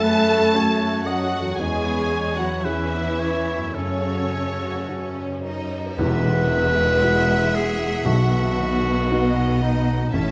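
Tender and uplifting, this brief cinematic orchestral cue drifts at about 53-59 BPM with a rubato feel, settling into E major at 6.0 s, as a distant, lush symphonic violin section carries the melody with portamento over a second violin section, an oboe line, mellow background piano, soft-attack violas, a rich double bass section, cellos, very quiet thumb-plucked harp arpeggios and sustained chords from a dark, roomy French horn section. The oboe and horns stop at 5.4 s, a very quiet cymbal swell and tam-tam enter at 1.6 s, and at 6.0 s an up-front solo clarinet takes a second line while very quiet timpani add weight under an accent. Close, detailed microphones capture the ensemble in a moderate scoring-stage reverb.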